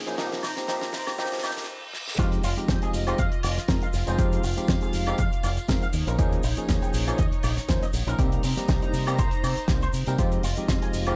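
Small-room ambience frames this groovy, cosmic nu-disco passage in F minor at 120 BPM, with a swung 16th-note feel and chords moving through Cm7, Fm7 and Eb7sus4. For the first 2.2 seconds a build-up of background riser and reverse cymbal sits over a drum fill from the damped 70s kit, whose fat snare, hi-hat, tambourine and woodblock are dry and mid-forward, beside a faint tube shaker. At the drop at 2.2 seconds a punchy, layered electronic kick arrives. Throughout the passage run a bright, fingered bass through an envelope filter, a gritty, barky tine electric piano with delay, a twangy, picked guitar riff with envelope filter, lush chorus and delay tucked behind, and a dark, reedy, distant string section holding sustained chords that pump with sidechain.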